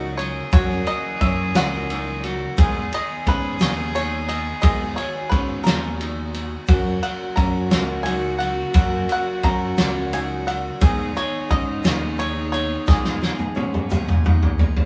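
A loose indie drum kit sits up front in this yearning, wistful indie folk passage, its punchy kick, fat snare, dark cymbals and toms carrying a gritty, saturated edge and a rolled-off top, with a fill from 12.9 seconds to the end of the cut. The piece moves in a straight 6/8 at 58 BPM in G# minor, alternating between F# and G#m chords in a building arrangement taken from a longer work. A twangy bluegrass banjo, fingerpicked and percussive, carries the melody. Beneath it, a single bowed cello played sul tasto adds a pure, floating second line. A picked dreadnought acoustic guitar and a woody upright piano, whose arpeggios come with audible action noise, sit in the background, while a direct, amped electric bass holds the low end. A very quiet, lush symphonic string section sustains chords with vibrato, a grainy tube shaker ticks faintly from 0.5 seconds, and the band plays live in one room with moderate studio reverb.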